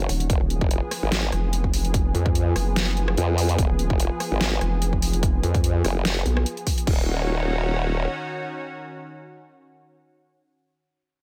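A half-time 4/4 groove at 146 BPM, with a slight swing on the sixteenths, drives this heavy, aggressive wobble dubstep in Eb minor, tuned a little flat to A4 = 435 Hz. It opens in the middle of a drop. A punchy, overdriven electronic kick sits up front beside a layered kit of deep snare, bright hats, rim clicks and crash cymbal, which carries the same distortion. Two wobble basses fill the low end with fast attacks, compression, chorus and grit. One is a sawtooth-and-sine formant-sweep bass, and the other is a nasal, resonant yet mellow vowel-sweep bass. Above them, a lush, thick, detuned unison pad of sawtooth and square waves holds sustained chords from Fdim to Ebm7 with a slow attack, chorus and sidechain pumping. The vowel-sweep bass drops out at 6.4 s, the drums stop at 7.0 s and the formant-sweep bass at 8.1 s, leaving the pad alone until 10.0 s in a dry, close sound.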